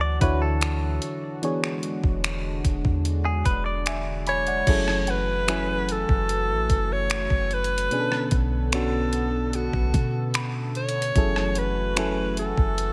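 Sensual and late-night, this contemporary R&B excerpt is built on a mellow FM electric piano, a shimmering, dark pulse-width pad with a slow attack and chorus, and a deep, boomy 808-style bass, all driven by an up-front, overdriven 8-bit drum machine with a thumpy kick, finger snaps, rim clicks, hi-hat and crash. A twangy, bright clean guitar plays delayed arpeggios until 4.6 seconds, briefly overlapping a jazz-style alto saxophone with vibrato that enters at 4.3 seconds to carry the melody. From 5.1 seconds a woody, round synth pluck adds a faint texture in the background, all set in light digital ambience over chords moving from Dmaj9 and E13 to F#m7 and Bm7.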